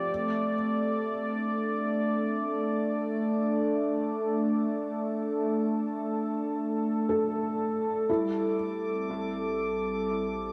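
A detuned, warbling analog pad holds sustained chords up front with chorus and shimmer reverb, while a felt-muted, boxy upright piano plays soft arpeggios through subtle chorus, analog delay and shimmer, over a very quiet organ-like drone that ends at 8.2 seconds, in this serene, reflective free-time ambient fragment whose dreamy, reverb-soaked mix shifts to an Am7 at 8.1 seconds, where a round, deep bass enters in the background and glassy, drifting harmonics join at 8.4 seconds.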